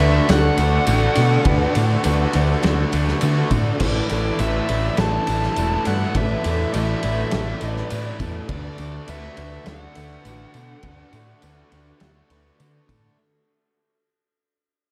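A straight 4/4 pulse at 102 BPM drives this blissful, dreamy shoegaze and dream pop rock passage in D major, cut from a longer piece and fading out across its full 13.2 seconds. A loose indie drum kit comes in at 0.3 s, distant and roomy with dark cymbals, a fat snare and a punchy kick, joined by a jingly tambourine set back in the mix, while an overdriven picked electric bass sits up front. Three riffing guitars stack beneath: a biting overdriven guitar touched with reverse reverb, a bright, double-tracked and compressed electric in the background, and a thick fuzz guitar with distortion and analog chorus. A picked twelve-string acoustic shimmers through octave-doubled arpeggios with chorus and delay, and a very quiet vintage string machine of violas holds soft-attack sustained chords. On top, a biting lead guitar with overdrive and analog delay carries the melody until 12.6 s, as the chords move from Dadd9 to Asus4 and back within a dark, warm production of light reverb and small room ambience.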